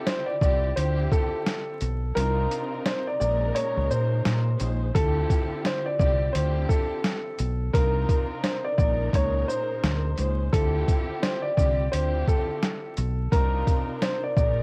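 Moody and reflective, this boom-bap hip-hop clip swings on a gritty, pitched-down sampler kit with a thumpy kick, hi-hat, shaker and medium-tuned snare, while a clear, vintage upright piano with long sustain carries the melody through tape echo. Lush bowed strings with vibrato and a smooth top sit low behind it, and a round, dark fingered electric bass enters at 0.4 seconds, up front and direct. The kick drops out between 2.2 and 5.0 seconds over drifting minor-eleventh chords, all wrapped in cassette grain, vinyl crackle and light reverb.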